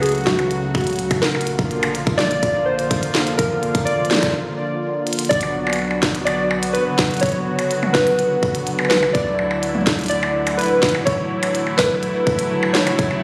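This short IDM excerpt has a glitchy, cerebral mood, built on a tight, tape-tinged electronic kick and an up-front glitchy kit of clicky hats, a tiny snare, toms and percussion blips. A warbling, lo-fi square-and-sawtooth keys melody with chorus and tape echo drifts nostalgically over a smooth, detuned analog pad in lush chorus, while a round sine sub bass with tube saturation hums in the background. The chords move from F#m to A# and later to Bm and Dadd9, and a break at 4.3 seconds ends with a drum fill at 5.1 seconds before the second section begins at 5.3 seconds, all set in a moderate digital room reverb with a phone-in-the-room character.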